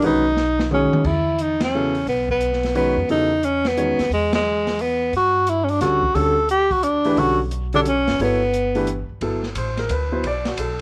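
Modal jazz in a swinging 3/4 at 176 BPM, spiritual and open in mood, cut from a longer piece. A breathy, whispered tenor saxophone carries the melody up front with vibrato and scooped notes until 9.1 seconds, over warm grand piano chords moving from B69 through Emaj7sus2 to Gmaj9, woody pizzicato upright bass, and a dark, smooth acoustic drum kit with a boomy kick that plays a fill from 0.4 to 1.1 seconds. Band accents punctuate the opening stretch, and light reverb lends the recording a small-room air.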